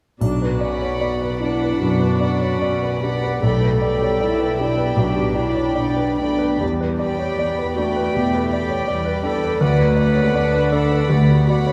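At 0.2 seconds this tragic, passionate excerpt of a romantic movement for piano and orchestra opens with a clear, slightly worn concert grand carrying the melody up front. A mellow solo clarinet traces a second line, a rich viola section murmurs accompaniment in the background, and a dark cello section holds the bass. A faint triangle glints briefly before dropping away at 1.8 seconds. From 0.6 seconds two violin sections join, both bowed sul tasto with soft attacks. An intimate chamber group sustains a high melody note with light vibrato, while a pure, floating symphonic section sings a warm second line. In B minor at a rubato 67-84 BPM, the harmony moves from Bm through G/B and Em7 to Bm/D, framed by a wet scoring stage reverb heard from further back in the room.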